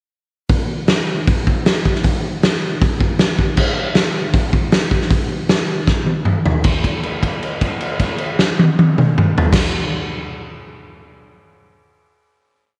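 A moderate echo-chamber reverb surrounds this whole rock piece, a short, raw and rowdy workout for a gritty, saturated garage drum kit that sits up front with a fat snare, punchy kick, hi-hat, crash cymbal and toms. At 156 BPM in a straight 4/4, the kit drives a big pre-chorus groove before a drum fill at 5.9 seconds leads into a final hit that rings from 6.6 to 9.5 seconds.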